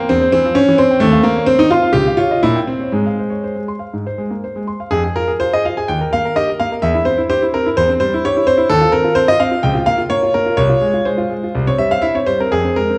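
A solo grand piano opens on a C chord over E, setting a dramatic, restless tone for this classical-period sonatina fragment, which is cut from a longer piece. The playing moves in a flexible rubato over a four-beat metre, passing through Db add9 and C7 colours before settling on F minor at 4.9 seconds, where the opening idea begins again. That second statement runs through Eb, Bb minor and F minor over C before arriving on a C chord at 11.6 seconds. The piano spans C2 to C6 with a clear, natural tone, long sustain and audible action noise, placed up front for an intimate feel. A wet recital-hall reverb surrounds it, and the overall production leans dark.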